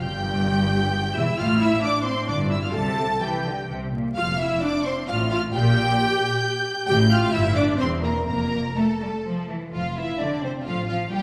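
In a rubato 3/4 at 131 BPM, this spirited, graceful classical-period movement for string orchestra in F major, cut from a longer piece, sets a rich, distant violin section on the melody above a smooth second violin line, a dark, woody viola accompaniment that drops out at 10.7 s, and an expressive cello section and warm double bass section sharing the bass, all bowed with vibrato in a reverberant church or concert hall touched by vinyl crackle.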